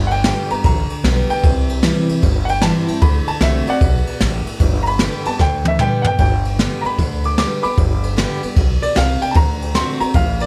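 Retro and rollicking, this rockabilly excerpt from a longer piece moves at 152 BPM in 4/4 with a 65% swing on the eighth notes, set in G major. A clear upright piano carries the melody as a solo high in its range, its short-sustained, natural tone colored by tape echo. Beneath it, a picked steel-string acoustic guitar with a full-bodied dreadnought sound plays the accompaniment, while an upright bass with gut strings is plucked in a woody, thumpy low register. The jazz drum kit, recorded in a studio room, played with brushes and sitting up front, pairs dark cymbals with a high-tuned snare, a boomy kick and toms, and it plays a fill from 5.4 to 6.2 seconds before the passage repeats. The harmony runs from G through C and D7 back to G before turning to D7 again, all within a light reverb.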